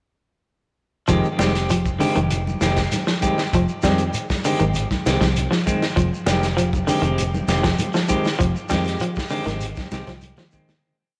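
A picked, clean electric guitar sits up front with rhythmic stabs in upper chord shapes, each one trailed by tape echo, in this driving, hypnotic afrobeat piece. Beneath it, a second electric guitar at the edge of break-up plays a twangy, fingered arpeggio ostinato, slightly broken-up and coated in lush chorus. A dark, round, foam-muted fingered bass carries a syncopated riff, while a gritty, saturated breakbeat kit with a tight kick and rolled-off top drives an afro kit groove of hi-hat, kick and snare. A grainy shekere stays in the background, and bright, very quiet congas enter at 1.4 seconds from a distant large room. The whole band rests on a single Fm9 chord in a moderate echo chamber, and the fade-out from 8.4 seconds closes with a drum fill at 10.1 seconds.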